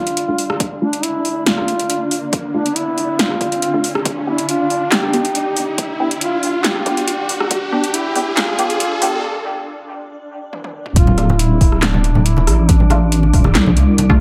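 A mellow duduk opens this dark, brooding deep dubstep passage, its scooped, vibrato-laden folk phrases softened by 12-bit sampler grit and trailed by dub echo, while a cloudy granular pad hangs beneath in blurred, evolving chords. The half-time groove builds as an overdriven electronic kick joins a deep house kit with a punchy snare and metallic hats, and muted dub chord stabs ripple through phaser and lush chorus as filter sweeps move across both stabs and pad. An electronic riser runs until 9.2 seconds, giving way to a brief break and a drum fill before the drop at 11.0 seconds. There a deep, wobbling bass enters up front with tube saturation, soft-handed congas sit in the background, and an airy, wind-like noise texture breathes quietly behind. The harmony moves from D minor to G during the build and settles on a bare D power chord at the drop, all bathed in a moderate spring reverb that sounds like part of a longer piece.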